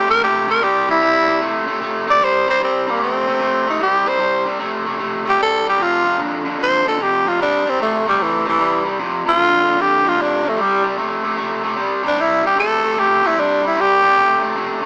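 Laid-back and gritty, this swung blues in C major moves at 150 BPM, cut from a longer piece. An up-front, growling tenor saxophone carries the melody as a breathy, raspy jazz solo with a soft attack throughout, while an overdriven hollow-body electric guitar plays a picked riff in its low register, stopping at 14.9 seconds. Plate reverb, vinyl crackle and a small-speaker sound give the recording a dusty, old-record character.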